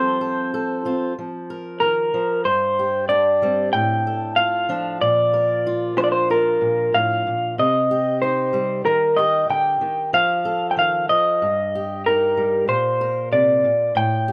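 Acoustic folk for a duo or small band, wistful and intimate, moving at 94 BPM in a straight 4/4. An electric guitar through a small old amp carries the melody up front, its slightly broken-up, lo-fi tone coloured by harmonic tremolo, while a fingerpicked steel-string acoustic guitar sits lower in the mix with a warm accompaniment through changes such as F, Gsus4, Cm and Eb. Light studio reverb and a rough home-demo mix give this 14.3-second fragment of a longer piece a close, unpolished feel.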